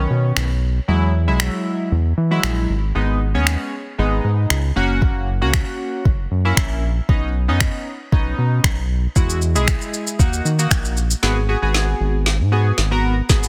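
Bittersweet yet energetic, this dance-pop excerpt in G# minor moves at 116 BPM in a straight 4/4, with chorused retro synth keys that sound glossy and bright, pumping alongside a round, deep analog bass from the very start. A smooth R&B drum kit enters at 0.4 seconds with finger snaps, shaker, a soft kick and a woody, softly clipped snare, set up front in a small-room sound. The harmony cycles through Badd9, Eadd9, G#m and F# before a drum fill builds from 11.2 seconds over G#m7, all within a dense, heavily limited modern master and digital ambience.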